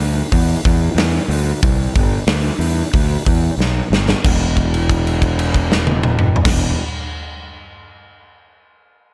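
A straight 4/4 groove drives this short, smoky, gritty cut from a longer blues rock and southern rock power-trio piece, with a big acoustic rock kit up front, its punchy kick, medium-tuned snare, hi-hat, toms and crash cymbal ringing in a big room. A fuzzed, growly fingered electric bass sits low and overdriven beside the drums, and a drum fill at 3.6 seconds leads into a second section where a held note carries from 4.2 to 6.4 seconds. The dry, close sound keeps both parts raw and in your face until they stop just short of 7 seconds.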